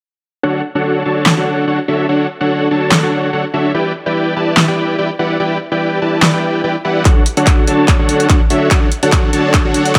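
A thick, detuned supersaw riff opens this euphoric, bright future bass excerpt at 145 BPM in a half-time feel, pumping against its sidechain through a low-pass filter and digital delay over Dmaj7 and Em7, joined from 1.3 seconds by an overdriven big-room kit of handclaps, hi-hat and a huge snare, before a punchy, overdriven electronic kick arrives at 7.1 seconds as a drum fill drives the build-up in a moderate room reverb.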